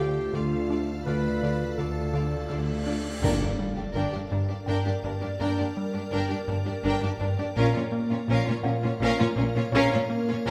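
A straight 3/4 pulse at 83 BPM carries this tense, eerie suspense cue, cut from a longer film score and moving through D minor, G minor and B-flat minor. A soft-attack violin section sings the expressive, lush melody in the background, while a second, focused violin line and a smooth, even viola section fill in beneath it, and rich cello and double bass sections anchor the low end with vibrato. A clear, punchy solo clarinet adds a second line only until 2.9 seconds, as a mellow French horn section holds sustained chords and an icy, crystalline glass pad shimmers above with chorus and its own reverb. Driving the tension is a rubbery, hollow square-wave bass riff with a bouncy filter pluck, and a dark, boxy baby grand piano adds a very quiet texture. A huge, bright cymbal swell starting at 2.6 seconds crashes into an impact at 3.2 seconds, where close, dry timpani strike on G. A wet recital hall reverb lends the strings, horns and winds a cinematic space.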